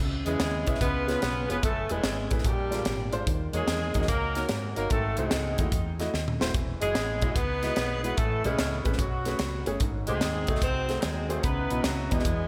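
A breathy, whispered tenor saxophone with scooped notes and delay carries the melody alongside a clear, vintage-toned horn section from 0.3 seconds in this soulful, solemn uptempo gospel piece in C# minor at 147 BPM with a swung feel, over a warm concert grand piano, a woody, round fretless electric bass, and a crisp, up-front fusion drum kit with a punchy kick, high-tuned snare and gated reverb that plays a fill at 6.1 seconds, all set in a lush hall with bright 1980s-style digital polish.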